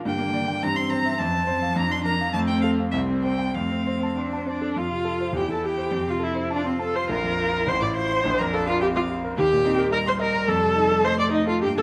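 An up-front, rich viola with expressive portamento and vibrato shapes the accompaniment beside a clear, vintage-toned grand piano of short sustain, while a distant, smooth violin carries the melody and a bright, intense cello with airy bowing sings a second line, giving this lively, cheerful classical-period piano quartet movement in F major a quick 2/4 pulse of 95-108 BPM with rubato, set in a moderate recital-hall reverb and captured by close, detailed microphones.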